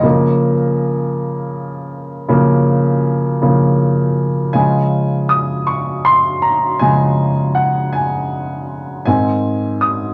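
Romantic and tender, this pop fragment features a lone upright piano in Db major, moving at a slow 53 BPM in a straight 6/8. The instrument sounds clear, woody and up front, ranging from Ab2 to Eb6 across roughly 10.1 seconds, with a new section arriving at 4.5 seconds. A wet studio ambience surrounds it, and the harmony moves through Db6, Db and Ab.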